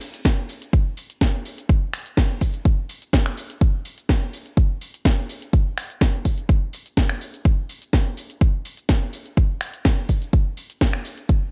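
A house drum kit opens this nostalgic, sensual house excerpt at 125 BPM in a straight 4/4, its finger snaps, hi-hat, shaker and cracking snare sitting up front with sidechain pumping on the hats, percussion and cymbals. At 0.2 s a punchy, layered electronic kick joins and carries through to the end at 11.4 s, louder than the kit. Both drum parts have a tape-warm, produced character and were re-recorded in a large room, yet the overall mix stays dry with little reverb.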